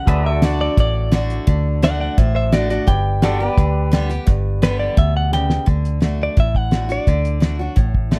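A dry, dark mix with little reverb frames this easygoing, down-home slice of honky-tonk and classic country, a fragment of a longer piece, moving briskly at 172 BPM in 4/4 with a straight feel in D major. A twangy, bright electric guitar, recorded direct and clean with tape echo, carries the melody as a solo through the opening stretch until 5.7 seconds, over a D to G change. Beneath it, a boxy parlour steel-string acoustic guitar is picked, while a pedal steel adds bright sustained chords and a woody upright piano sits very quietly in the background. A round, foam-muted vintage electric bass sits up front with a punchy presence, and a cloth-damped drum kit, with its fat snare, tight kick, hi-hat and rolled-off top, thuds along. A drum fill at 5.3 seconds leads into a new section where the solo ends and the steel and piano drop away, leaving both guitars, bass and drums to settle back on D before the clip ends at 8.2 seconds.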